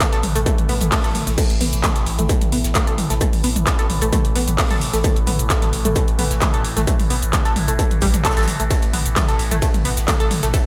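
A straight 4/4 pulse drives this hypnotic, dark peak-time techno fragment. Up front are a distorted electronic kick and a techno kit of metallic hats, claps, crash, ride, shaker and toms in gated reverb, with a very quiet, dry 70s acoustic kit adding hi-hat, shaker and a fat snare. Beneath them, a round sine sub bass pumps through a low-pass filter, while a tight, detuned sawtooth riff with wave-folded filter plucks carries chorus, phaser, tube saturation and delay. Behind it all, a resonant drone of moving overtones is washed in chorus, phaser and reverb, and a brief electronic swell arrives at 0.7 seconds, all set in a bright 1980s-style digital production with light reverb.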